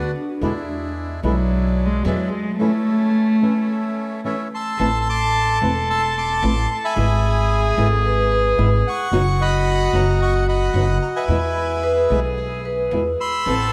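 A dreamy mix soaked in plate reverb frames this sultry, melancholic tango excerpt with a loose, rubato feel. A woody pizzicato upright bass sits up front throughout, a thumb-plucked flamenco guitar with subtle chorus accompanies, and a soft, floating bowed cello played sul tasto takes a solo in the opening section before carrying a second line with diffuse ambient delay. Dark, reedy bandoneon stabs open the piece until a boxy bandoneon melody takes over at 4.5 s, while a metallic, ringing vibraphone with fast motor vibrato adds a brief touch at the start and another second line from 7.5 s.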